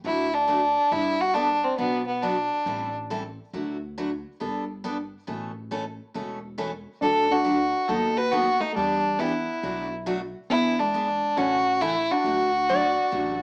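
A bright, full-bodied picked acoustic guitar, with audible finger squeak, and a woody, thumpy upright bass set up a cheerful, down-home western swing groove in this excerpt, as a clear, smooth fiddle with light vibrato carries the melody up front before pausing at 3.0 seconds. At 7.0 seconds the fiddle returns alongside a dark, clean hollow-body jazz guitar playing a second line. A clean lap steel slides in just at 12.7 seconds, all set in moderate studio reverb with a small-speaker sound.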